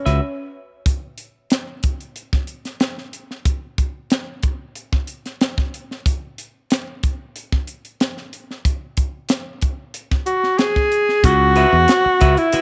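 Funk in C# minor at 92 BPM, cool and funky, opening on a C#m7 before a brief break at 0.2 seconds leaves the crisp, polished fusion drum kit (high-tuned snare, punchy kick, hi-hat) carrying a long unaccompanied stretch in an airy studio room. The breathy alto saxophone, close-miked and intimate with subtone, vibrato and a slapback echo, returns at 10.3 seconds with a whispered jazz-style line between C#4 and G#4. The growly, bright fingered bass re-enters at 11.2 seconds as the harmony lands back on C#m7, and the dark, clean semi-hollow guitar follows quietly at 11.6 seconds as the cut ends.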